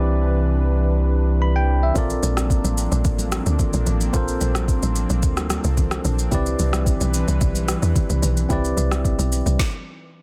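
The woody log drum bass stands out most, entering at 2.0 seconds with a punchy, percussive attack and a mellow decay that sits up front in this relaxed amapiano excerpt at 110 BPM in 4/4. Before it arrives, a round sine sub bass holds a deep C2 beneath the keys for the opening 1.9 seconds. A tine electric piano with a phaser plays clean, direct accompaniment throughout, while an airy, breathy pad with chorus and sidechain pumping sustains soft, detuned chords underneath. From 2.0 seconds a smooth, electronic R&B kit adds a soft kick, rim click, shaker and woody snare, with very quiet, dry congas played by soft hands. The harmony moves from Cmaj9 to Bbmaj9 and returns to Cmaj9 at 6.3 seconds, and the music stops around 9.6 seconds in a dense, heavily limited master with little reverb.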